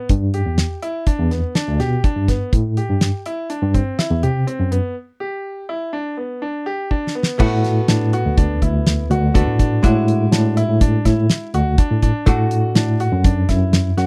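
A dry, close 1970s-style studio sound frames this intricate, tense progressive instrumental in 5/4 at 123 BPM, where a tine electric piano carries the bass with a fast tremolo through a combo amp, up front beside a damped drum kit with dark cymbals, a fat snare and a tight kick. A brilliant grand piano spins arpeggios over G and Am7 before a break at 5.0 seconds and a drum fill at 6.9 seconds. At 7.4 seconds a compressed, picked hollow-body jazz guitar joins in accompaniment as the harmony moves through D69, E7/A and Dadd9.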